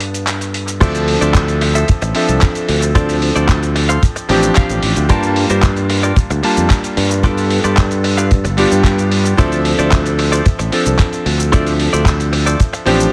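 An echo-heavy mix with light reverb opens this sensual, groovy nu-disco passage, cut from a longer piece, moving at 112 BPM in a straight 4/4 in D minor. A cutting, vintage electric grand piano sits up front with a clangy low end, its accompaniment pumping from sidechain compression and trailed by analog delay. A growly, fingered electric bass holds the bottom alongside it. A gritty, sampler-style soul kit of crash cymbal, handclaps, hi-hat and shaker carries small room ambience and analog delay, while a dry, tight acoustic kick joins up front at 0.8 seconds as the drop arrives. A twangy, picked clean electric guitar enters with a riff at the same moment, touched with subtle chorus and delay, and plays short fills at 4.3 and 12.6 seconds. The harmony moves from G7 to Dm7, then through Gm7 and G7 before returning to Dm7.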